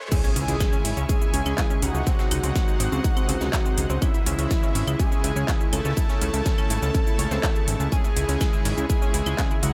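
A straight 4/4 pulse, led by an up-front distorted electronic kick, drives this dark, dramatic melodic techno drop, where a very quiet riser and impact end by 2.1 s beneath a fat, saturated analog bass, metallic hats and handclaps from a sidechain-pumped techno kit, a gritty breakbeat sampler-style kit in the background, a vintage, warbling analog lead with dub echo, a smooth soft supersaw and a lush, ring-modulated unison pluck arpeggio (both pumping, with digital delay), brassy, nasal pad stabs, and a faint, morphing wavetable pad underneath.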